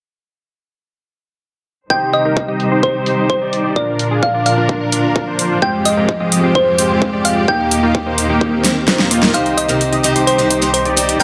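A round, tine-like synth pluck carries the melody from 1.9 seconds over lush bowed strings and a thick, detuned supersaw riff, both pumping with sidechain. A punchy electronic kick and an up-front dance kit with a huge snare and metallic hats, under a filter sweep, drive this emotional, anthemic festival progressive house passage through a Cm–Bb–Fmadd9–Eb progression. A very quiet riser and a drum fill lead into a build-up at 9.3 seconds, where a bright, boxy picked steel-string acoustic guitar and a faint, intimate grand piano playing high arpeggios join as the supersaw gets its own filter sweep, all set in light reverb and digital ambience.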